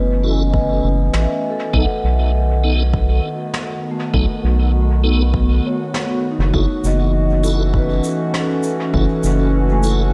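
A warbling, nostalgic tape-like pad with chorus and lo-fi sampler grit holds sustained chords while a mellow soft-mallet vibraphone rings out arpeggios through dub echo and a round, up-front analog bass anchors the low end, opening this spacious, meditative ambient dub piece over F#m7 and B7; a piping, lightly overdriven tonewheel organ with key click and slow rotary speaker adds echoing stabs from 0.2 s, a deep, layered electronic kick sits in the background from 0.5 s, and a distant, brushed snare and shaker, also sent through dub echo, join at 1.1 s in a small, lightly reverberant room.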